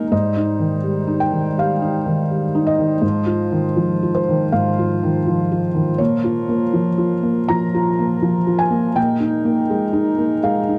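A dry, close, vintage-sounding studio recording captures a short, longing and fragile neoclassical passage at 82 BPM in Bb dorian with a rubato feel, where a soft, felt-muted upright piano sits up front with intimate, mellow accompaniment from Ab2 to Bb5 while a reedy, breathing hand-pumped harmonium holds sustained chords quietly beneath it throughout the 10.8 seconds, moving from Abmaj7 through Fm7/Ab and Bbm to Ebsus4/Bb.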